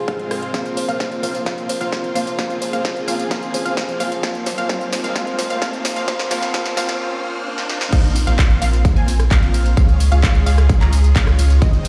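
A straight 4/4 pulse from a punchy, up-front electronic kick and a big-room dance kit with metallic hats drives this triumphant, anthemic festival progressive house passage, where a woody, ringing kalimba melody and an intimate grand piano with audible action noise ride a filtered build-up over lush bowed strings, a deep saturated sine sub bass, a bright detuned pluck arpeggio with a cassette-tape tint and a huge, thick supersaw riff, the bass, piano, strings and synths all pumping with sidechain, a background riser entering at 2.5 seconds, a brief break at 7.0 seconds and the drop landing at 7.9 seconds in a stone room's reverb.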